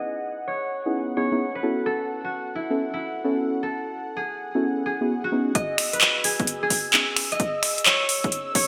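A swung 130 BPM two-step garage groove in C# minor arrives when a punchy, tape-warm electronic kick enters at 5.5 seconds and an overdriven, layered kit of finger snaps, handclaps and metallic hats with gated reverb joins at 5.6 seconds for a build-up, after a soulful, moody opening of harp, stabs and pad under filter sweeps. A mellow, ringing concert harp carries the melody through digital delay, over deep, dark, detuned chord stabs with chorus and a smooth sawtooth pad that sits in the background with sidechain pumping, moving between C#m9 and B9sus4. The bright 1980s-style digital production sits in a lush hall reverb, and this cut from a longer piece ends at 8.7 seconds.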